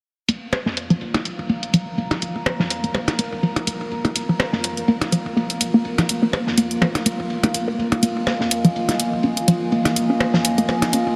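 A hollow, bouncy square-wave pluck carries the riff in this quirky, cool stretch of minimal techno at 124 BPM in 4/4, its detuned, wave-folded tone roughened with 12-bit sampler grit, chorus and analog delay, while the harmony rests on Bb5. An overdriven, layered electronic hi-hat sits up front, re-recorded in a large room, and brief percussion blips with delay add a playful edge over a lightly swung 16th-note feel. Further back, an acoustic fusion kit with a high-tuned snare and ride cymbal pumps in its small room, and a deep sub bass with a pitch-drop attack stays very quiet underneath. A warbling, nostalgic tape-like pad, lo-fi and dark, and a resonant sawtooth texture that bubbles through random filter steps from 1.1 seconds both drift in chorus and their own reverb, and a filter sweep moves over the synth arpeggio sound throughout. The whole dreamy mix is soaked in a huge ambient reverb, giving this short excerpt of a longer piece a hazy, spacious glow.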